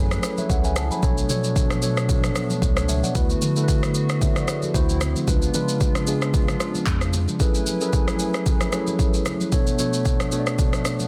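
A swung 16th-note groove at 113 BPM drives this soulful, hypnotic amapiano excerpt in F# minor: an up-front, overdriven electronic drum kit of deep kick, handclaps, rim click and shaker, with very quiet, bright congas of thin vintage skin tucked beneath. A mellow, clean tine electric piano carries the chords from F#m11 through Bm9, D6 and C#7b9 over a hollow, flute-like, detuned pad that sits in the background with chorus and sidechain pumping. A punchy sine sub bass with a pitch-drop attack holds the low end until it drops out at 7.3 s, all set in light digital ambience and a dense, heavily limited master.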